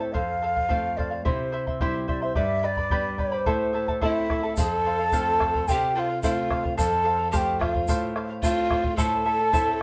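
A hollow, airy wooden quena carries a festive yet melancholic Andean folk melody at 109 BPM in a straight 2/4, over shimmering fingerpicked charango, classical nylon-string guitar with finger squeak and a round bombo, cycling through F, C, G and A minor, before a breathy bamboo pan flute with vibrato, a soft attack and chiff adds a second line at 4.0 seconds and a grainy tube shaker joins at 4.6 seconds, the whole band sounding live in one room with a wet studio reverb in this short excerpt.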